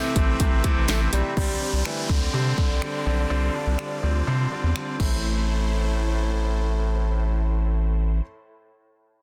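This confident, bittersweet dance-pop excerpt opens with three parts at once in A minor, at 124 BPM in a straight 4/4, tuned to A4 = 438 Hz. A mellow, distant bassoon carries the classical-style melody with light vibrato and tape echo. Beneath it sit a clear, intimate concert grand piano with audible action noise and huge, lush detuned supersaw chords run through a phaser, both pumping with sidechain. At 0.2 s a round, deep analog bass arrives up front, also pumping, alongside a punchy, layered pop kit of kick, fat snare with soft clipping, metallic hi-hats, crash, finger snaps and handclaps. At 0.9 s a jingly tambourine flickers briefly in the background. From 1.4 s an electronic downlifter runs as the harmony moves from Am to Csus2 and back to Am, and the drums drop out at 5.1 s. The whole is set in a digital ambience with a dense, heavily limited modern master.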